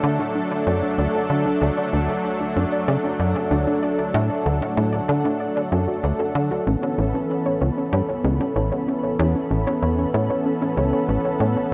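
A tight, punchy sawtooth sequencer bass with delay drives this luminous, cosmic fragment of ambient, sequencer-driven space music at 95 BPM in D major; it sits up front beside a lush, nasal unison pad with chorus holding sustained chords that move from D to Aadd9 at 6.7 s, while a soft, round pluck with chorus and delay spins arpeggios in the background and a pulsing, tempo-synced gated texture fades in high above, all bathed in a long, wet plate reverb.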